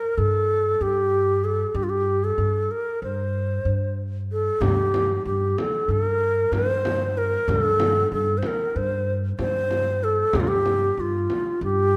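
Set in a moderate stage reverb, this soulful, hypnotic excerpt of a Turkish makam ensemble in G makam ussak moves in 9/8 at 189 BPM in eighths, with an up-front breathy, bright low ney carrying the tongued, vibrato-laden melody between F4 and C5, a woody, thumpy pizzicato upright bass holding G2 from 0.2 seconds, and a deep, distant frame drum entering at 4.6 seconds.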